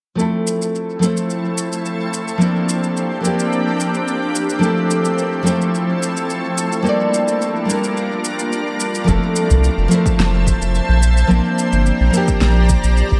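An echo-heavy mix in a moderate spring reverb gives this sunny, warm sunset chillout excerpt a soft, spacious glow at 108 BPM in a straight 4/4, in F major and tuned to A4 = 444 Hz. A full-bodied, fingerpicked nylon-string guitar sits up front from the start, its finger squeak coming through a low-pass filter and dub echo as it outlines Fmaj7, Bb69 and Gm7. From 1.0 s a shimmering, ethereal pad holds sustained chords with a slow attack, octave-up sparkle and granular, detuned chorus. Meanwhile, a layered electronic shaker and fat snare with a tape-tinged character keep time under tape echo. At 9.1 s the piece moves into its second section as a deep electronic kick drum and a round, dark analog bass enter, the bass pushed forward with a fast attack.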